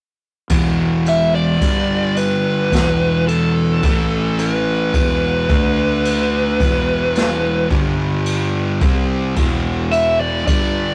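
Stoner and doom metal, ominous and brooding, with two thick, picked fuzz guitars holding the riff in the background over a growly, punchy fingered bass, a brushed drum kit with a boomy kick and dark ride cymbal, and a compressed fuzz lead guitar up front carrying the melody from 1.1 seconds, all heard through the stone-room reverb and tube saturation of a rough rehearsal-room recording.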